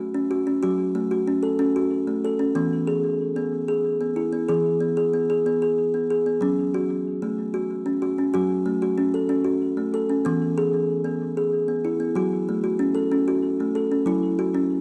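In a straight 6/8 lilt at 62 BPM counted in dotted quarters, this meditative, hypnotic world piece for tuned percussion features a lone kalimba, thumb-plucked and placed up front, whose woody, hollow-box tone rings out between E3 and A4, trailed by tape echo. In F# minor, the harmony rocks between F#m and E before settling on an F#5 at 14.1 seconds. The dark production sets everything in a wet echo-chamber reverb with studio ambience, in a fragment cut from a longer piece.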